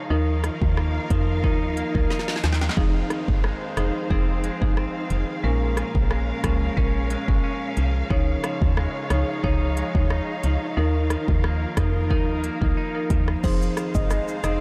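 A straight 4/4 dancehall groove at 90 BPM in F minor, hypnotic and sultry, rides an up-front electronic afro-pop drum kit with deep kick, crisp hats and a fill at 2.1 seconds, beneath a dark, round FM bass, a percussive hard-mallet marimba on rosewood bars, bright twangy arpeggios from a clean electric guitar in the background and a sidechain-pumped bowed string section holding warm sustained chords with vibrato, and at 13.4 seconds a gentle keys-like synth lead with chorus and delay joins to take the melody in this passage cut from a longer piece.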